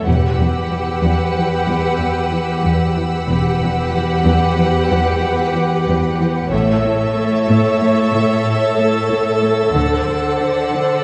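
Heard from further back in a wet scoring-stage space, this tense, mysterious suspense film cue in 5/4 sets a focused violin section's melody over a dark, portamento-shaded second violin line, clear violas, an intense bright cello section and a rich, smooth cello riff, with woody double basses in the background, a high, even violin texture floating above, and a very quiet felt-muted upright piano entering at 4.9 s and stopping at 9.8 s as the harmony moves from Emadd9 to A and D7.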